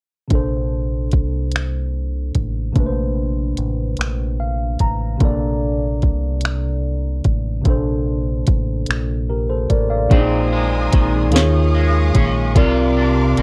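Sensual and warm, this slow six-eight R&B passage, cut from a longer piece, sways on a straight feel. A worn, slightly out-of-tune tine electric piano carries the chords through analog chorus and adds a fill at 4.0 seconds, over a dark, round, punchy fingered dub bass. The smooth, electronic drum kit sits up front with a soft kick, sharp snare, hi-hat and finger snaps. At 10.1 seconds the harmony moves into suspended chords as a twangy, picked electric guitar at the edge of break-up enters with lush chorus, joined by a distant, expressive bowed string section with vibrato and portamento. The whole recording carries light reverb and the warbling pitch drift of old cassette tape.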